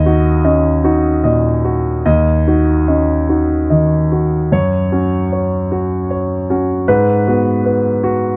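A warm grand piano plays alone and up front throughout this brief fragment of neoclassical minimalist music, its natural tone spanning from D#2 up to D#5 in 6/8 with a rubato feel. The harmony moves from D#m through D#m7 before shifting at 4.5 seconds to F#5 and then G#m7, giving a peaceful, hopeful cast. Light reverb and a dark production surround the instrument.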